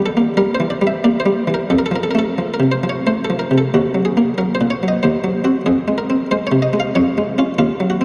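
Flowing and solemn, this brief cut from a longer baroque-style suite movement moves in a gentle 3/4 at 92 BPM, its pulse loosened by rubato. A single buff-stop harpsichord plays solo for the full 8 seconds, its plucked, muted tone taking on a lute-like, French-style character. The instrument sits mid-forward and up front, its own sound close and dry, spanning from Eb2 up to F5. Around it, a deep cathedral reverb with a long tail gives the dark production a spacious, reverent glow. The harmony drifts through shadowed chords such as Em7b5, Ebm, Cdim/Eb and Fm before settling on Db/F, lending the passage a grave, searching quality.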